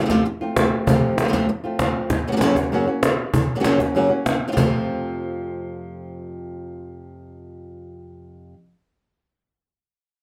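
Passionate and intense, this flamenco fragment moves at a brisk 195 BPM in a straight 4/4, cut from a longer piece. A bright, fingerpicked flamenco guitar carries the melody up front, its acoustic tone marked by audible finger squeak as it ranges from F2 to Gb4 over harmony that moves from F to Gb and back to F. A snappy cajon with snares sits beside it, sounding acoustic and set in a large, distant room yet still up front in the mix. The cajon drops out at 4.6 s, leaving the guitar alone until it stops at 8.5 s. A short, wet studio reverb and a rough home-demo mix give the recording an unpolished, immediate feel.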